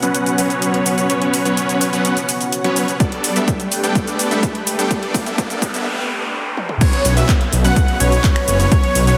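A chorused, phasing pad and huge, bright supersaw chords pumping under a filter sweep open this powerful, euphoric festival progressive house excerpt in B minor at 126 BPM, alongside a big-room dance kit of metallic hats, finger snaps, handclaps, shaker, toms and crash, with risers and noise sweeps entering in the background at 1.8 s; a punchy, layered kick arrives at 3.0 s to drive the build-up, and at the drop at 6.8 s a dark, bold unison lead plays arpeggios with dub echo as a thick, menacing detuned saw bass comes in, the mix sitting in a moderate hall reverb with a heavily compressed, radio-like sound.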